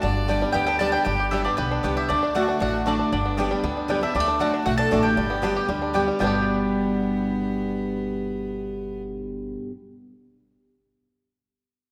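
At a brisk 234 BPM in straight 4/4, this lively, virtuosic bluegrass excerpt in G major features a woody picked mandolin carrying the melody over a bright, full-bodied dreadnought guitar up front, twangy fingerpicked banjo arpeggios, a thumpy gut-string upright bass, a biting fiddle with light vibrato playing a second line in the background, and a mellow second mandolin adding stabs from 0.3 seconds, all set in a moderate scoring-stage reverb.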